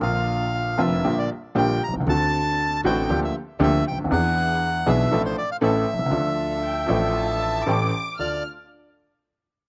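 Dramatic and tense, this rubato D minor tango at 118 BPM sets a reedy, close-miked bandoneon melody with slapback echo up front over a woody upright piano, thumpy pizzicato upright bass and lush, dark bowed string stabs in the background, before a gut-string chamber violin section with light vibrato joins on a high second line at 6.6 seconds, all in a dry, roomless outdoor sound.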